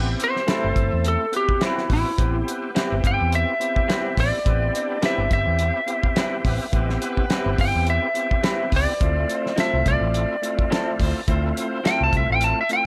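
A bright, twangy lead guitar with a slightly broken-up edge takes a solo across this brooding, mournful slice of straight-eighth soul blues in A minor at 106 BPM, moving from Am9 to Dm9 at 9.0 seconds. Up front beside it sit a round, foam-muted fingered bass and a cloth-damped, thuddy drum kit with a fat snare and tight kick. A gritty overdriven tonewheel organ turns through a slow rotary speaker, while in the background a lo-fi electric guitar adds stabs through an analog delay and a clear vintage horn section holds sustained chords, all in light reverb.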